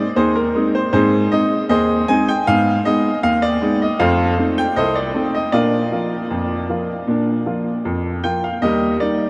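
A straight 2/4 pulse at 78 BPM carries this lively, jaunty ragtime fragment of about 9.3 seconds, cut from a longer piece, played by a solo baby grand piano ranging from C2 to Ab5. The piano sits up front with a clear, boxy tone and long sustain, touched with analog delay and drenched in a huge ambient reverb lasting 7.5 seconds that gives the mix a dreamy haze. The harmony moves from Ab through Abm, F7 and Bb before landing on Eb at 8.6 seconds.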